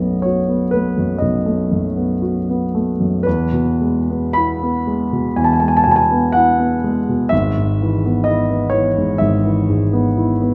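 A dark, mellow grand piano sits up front in a stone room's wet reverb, opening on B7 and settling onto E at 3.3 seconds and E/G# at 7.3 seconds, as this tender, nostalgic romantic nocturne in E major unfolds with rubato at 51-65 BPM in 4/4, tuned to A4 = 436 Hz and spanning G#1 to B5 in a brief section cut from a longer piece.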